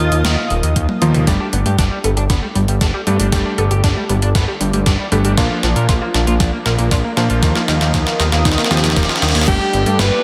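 A light reverb and digital ambience frame this short, uplifting synthwave excerpt, which moves at 117 BPM in a straight 4/4 and opens on an Ebsus2 chord before shifting through Gsus2 and Bb. A fat, sawtooth analog bass sits up front, and a thumpy, overdriven electronic kick enters at 0.8 seconds to join a gated 80s digital drum machine, already running, whose crash, hi-hat, snare and toms carry gated reverb and a small-room character, and a drum fill sets up the main section at 1.3 seconds. Behind them, a smooth, dark analog pad with chorus and sidechain pumping holds sustained chords, while a vintage electric grand piano with a clangy low end adds short stabs through delay. From 1.3 seconds a round, chorused analog pluck plays arpeggios with a cassette-tape tint, and a clean, picked semi-hollow electric guitar plays a riff through delay, with filter sweeps running across the pad, the arpeggios and the guitar while a very quiet riser and reverse cymbal build toward 9.5 seconds. 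A bright, pop-style alto saxophone with vibrato carries the melody in brief phrases at the very start and end, joined in the closing moments by a lush, very quiet FM electric piano with a soft pad layer, giving the passage a dreamy finish.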